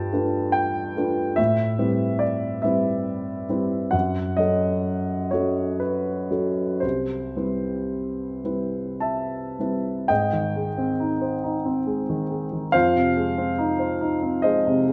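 In a rubato 3/4 that drifts between 49-74 BPM, this luminous, serene excerpt of impressionist classical solo piano lets a present, up-front grand with long sustain move through rich extended chords in C lydian before shifting to Ab major at 10.1 seconds, all bathed in a moderate scoring stage reverb.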